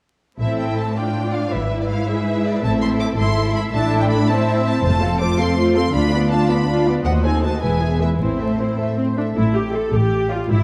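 A straight 6/8 pulse at 108 dotted-quarter beats per minute drives this quick classical-period movement for string orchestra in A minor, cut from a longer piece, with an urgent, restless mood. All five sections enter together at 0.4 seconds: focused first violins carry the melody high above, while the second violins trace an expressive line with a soft attack and a smooth top beneath them. The violas sit bright, intense and up front in the accompaniment, and the cellos and double basses anchor the bass with an even, rich tone, all of them bowed with vibrato. The harmony moves from A minor through D minor and F to tense diminished chords before resolving through E back to A minor around 8.2 seconds, as the opening phrase begins again at 9.4 seconds. A dark production places the ensemble in a wet concert hall with a long reverb tail, and vinyl crackle adds an aged patina.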